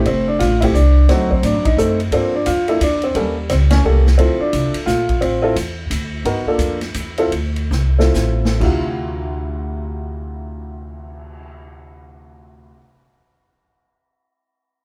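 A swinging 3/4 waltz feel with lilting eighth notes drives this moody jazz piano trio excerpt in D minor, its tempo ranging from 122 to 175 BPM. An upright piano, woody and natural with plate reverb, carries the melody up front over harmonies that move through F, D7b9, Gm7, Eb7#11 and Dm9. A pizzicato upright bass with steel strings also sits up front, its tone woody and warm in the low register. A swinging big-band drum kit fills out the groove with a punchy kick, medium-tuned snare, hi-hat, ride, crash and a cymbal swell, sounding acoustic with a big-room character. The trio plays together on accents at 1.6 and 3.7 seconds, then slows down from 6.2 seconds as the harmony returns to Gm7 and Dm9, with the drums adding a fill to close the passage. The whole band is heard from further back in a small room with moderate reverb.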